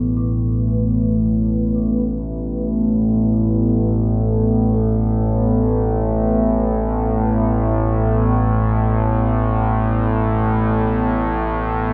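This dark ambient drone piece drifts in free time, its desolate and unsettling mood sustained across a short 11.9-second section cut from a longer work. Up front sits a low analog drone, nasal and evolving, built from sawtooth and pulse waves with pulse-width modulation, slow attack, long release and chorus. Above it, a dark analog pad holds sustained chords in a deep, full-bodied, detuned blend of sawtooth and triangle with a sub octave, also washed in chorus. A very quiet bronze singing bowl rings throughout with slow beating and a metallic, meditative tone, struck with a suede striker in a boxy small room. A gamelan-type bronze metallophone adds faint, airy arpeggios played with a wooden mallet, dropping out after 3.3 seconds. The whole is set in a huge, wet reverb with a 7.9-second decay, giving the dark, warm production a cavernous depth.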